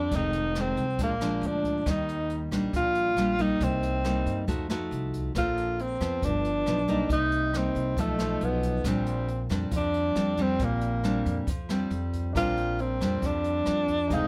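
Bossa nova in Bb major at 137 BPM in a straight 4/4, this excerpt has a romantic, relaxed mood. A breathy tenor saxophone carries the melody up front, mellow and jazz-styled, with vibrato, subtone, scooped notes and a smooth top, played solo. Beneath it a full-bodied nylon-string guitar, fingerpicked in a classical manner and also up front, supplies the accompaniment through changes such as Fm7, Bb7, Ebmaj7 and a closing Bb69. An upright bass plucked on gut strings adds a woody, thumpy low end, while a jazz brush drum kit in a natural studio room keeps time on hi-hat, rim click and a boomy kick. At 12.3 seconds a clear grand piano joins in the background as the section begins again, and light reverb gives the ensemble a gentle sense of space.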